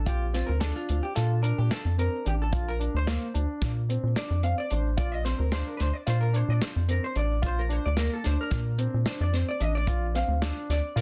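A clean, dark hollow-body electric guitar, double-tracked and picked, solos over a Bbmaj7 chord throughout this driving, intricate progressive instrumental in 9/8, while a rubbery, bouncy square-wave synth bass sits up front as the loudest part. A mellow concert grand piano plays deep-toned arpeggios through tape echo, and a distant acoustic soul drum kit with a tight kick, medium-tuned snare and hi-hat keeps a straight feel with a rolled-off top. The moderate studio ambience and a dense, heavily limited modern master frame this 11-second excerpt, cut from a longer piece.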